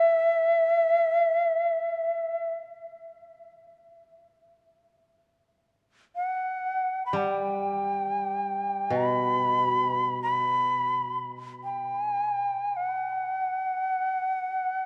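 Japanese traditional chamber music in free time, meditative and austere, cut from a longer piece. A bright, airy shakuhachi carries the melody up front, its vibrato, crisp attack and chiff heard close at hand; it sounds briefly at the start and returns at 6.2 seconds to play through to the end. A quieter, woody koto played with fingerpicks adds a low accompaniment from 7.1 to 12.2 seconds, and the dark production sets the music in a long, wet cathedral reverb.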